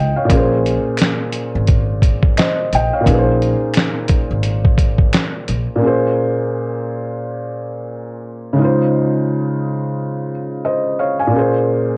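Worn, warbling cassette tape gives this lo-fi hip hop fragment a nostalgic, reflective haze, with a swung pulse and minor-key chords. A soft, felt-muted upright piano sits up front, dark and intimate under a low-pass filter and plate reverb, over a woody upright bass, a gritty sampler-style drum kit with a thumpy kick and fat snare, and very quiet finger snaps from 1.0 s. Bass and drums drop out at 5.7 s, leaving the mellow piano alone until 12.0 s.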